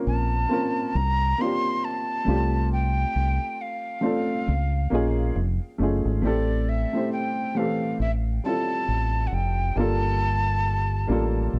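A breathy, bright jazz flute carries the melody from 0.1 seconds, its crisp, chiffy attack and vibrato sitting up front, softened by a low-pass filter and plate reverb. This is nostalgic, mellow lo-fi hip hop at 68 BPM in 4/4 and F major, with swung sixteenths. A woody upright piano with short sustain plays the accompaniment, colored by cassette tape, its own low-pass filter and plate reverb. Its chords move through Bbmadd9, Db6 and F7alt before the second section opens on Am7 at 6.2 seconds and later reaches Gm9. Underneath, a deep dub fingered electric bass gives a round, direct, amped tone and is the loudest part. The production is dark and warm with a moderate studio room, and this short cut from a longer piece ends at 11.6 seconds.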